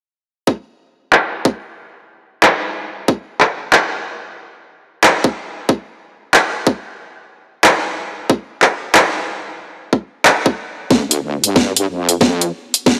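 A tight, overdriven electronic kick opens this swaggering, gritty glitch hop cut at 0.5 s, joined at 1.1 s by a layered drum kit with a cracking snare, bright hats and handclaps, all riding a 92 BPM swung groove in D minor pentatonic. At 10.9 s a build-up and drum fill arrive alongside a heavy, detuned sawtooth wobble bass, saturated and chorused, sitting low in D2 to G2. The dry hardware grit is set in a moderate lush hall, and the passage is taken from a longer piece.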